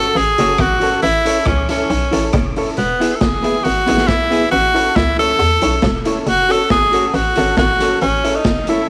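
A lightly swung ska groove at 138 BPM in 4/4 bounces along in this cheerful excerpt, with a raw garage drum kit entering at 0.2 s on hi-hat, kick drum, rim click and snare drum, its punchy kick and medium-tuned snare sounding saturated and gritty with a rolled-off top. Underneath, a hollow, knocking FM bass with a fast attack and short decay gives the low end its punch. Up front, an edgy tenor saxophone carries the pop-style solo melody with light vibrato. In the background, a clean, picked hollow-body jazz guitar supplies dark accompaniment, while a detuned, jangly honky-tonk upright piano adds bright vintage stabs. The harmony moves between F#m, A and E, and a moderate echo chamber reverb with small room ambience surrounds the band until the piece is cut off at 8.9 s.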